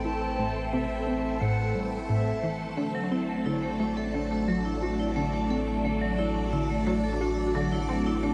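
This ambient, sequencer-driven piece of space music feels expansive and hypnotic, moving at a steady, straight pulse in four. A phased string machine holds swirling, vintage chords with slow attacks and long releases, its ensemble chorus and phaser keeping it bright and up front, while a round sine sub bass sits deep underneath. A punchy, funky analog bass riff runs throughout, its plucky tone evolving under a continuous filter sweep, with ring modulation, delay, chorus and a touch of 12-bit sampler grit. A reedy concert flute opens with a brief, airy, straight-tone melody with delay and rolled-off highs that ends at 2.6 seconds, and a hard-mallet vibraphone enters at 2.8 seconds with dark, metallic, ringing arpeggios carried by a slow motor vibrato and echoes. The whole passage sits in a huge, wet ambient reverb with a long tail, and it is cut from a longer piece.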